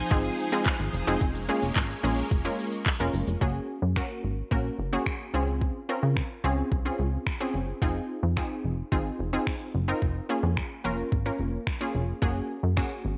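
Dance-pop in Bb minor at 109 BPM, energetic and driving, this excerpt opens on a drop where shimmering vintage string-machine violins hold bright sustained chords with ensemble chorus until 3.4 s, while a punchy, funky, wave-folded analog bass and a round, detuned analog pluck with chorus both pump against the sidechain over a smooth electronic R&B kit of soft kick, snaps, handclaps, shaker and silky hats, a distant, crisp group handclap barely audible early on, all in light reverb as the chords move from Fm7 through Bbm7/F, Gbadd9 and Dbmaj7.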